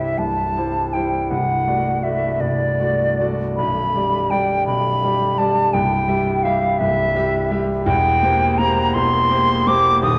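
A hollow, vibrato-laden concert flute and a brilliant grand piano with deep bass and long sustain open together in this lyrical romantic duo, a fragment cut from a longer classical piece in C major, moving in a rubato 6/8 at 55 BPM by the dotted quarter. The tongued flute sings a pure melody up front as the piano accompanies through C, D7/C, G/B, C and C7/E. The pair sits in a wet recital hall reverb and carries the worn, warbling pitch drift of an old cassette tape, which colors the warm mood.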